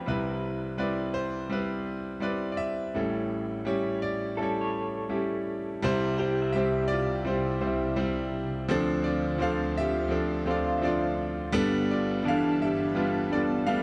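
A dark, richly reverberant production frames this nostalgic, heartfelt acoustic folk-pop ballad in C major, moving at a straight 84 BPM in 4/4 through chords such as Cmaj7, A7, Dm7 and Gadd9. An up-front, brilliant grand piano carries the melody throughout, while a slightly broken-up, lo-fi electric guitar through a small old amp plays fingered arpeggios with tremolo. At 6.3 seconds a silky, detuned analog string pad enters with slow-attack sustained chords, shimmering with ensemble chorus and phaser.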